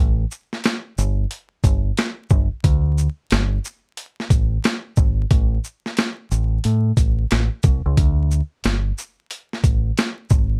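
A dry, close recording carries a steady layer of vinyl crackle, giving this short cut from a longer piece a dusty, lived-in surface. It is boom-bap hip-hop in 4/4 with a moderate swing on the sixteenths, and the mood is tough and gritty. A deep dub-style fingered electric bass sits up front from the first second, its tone dark and round, heard direct and amped as it moves through a low register. At 0.3 seconds a sampler-style drum kit arrives, compressed and pitched down for a grainy weight, with a thumpy kick, a high-tuned snare, hi-hat and shaker. Both parts stay prominent in the mix for the whole passage, creating a lean, head-nodding groove.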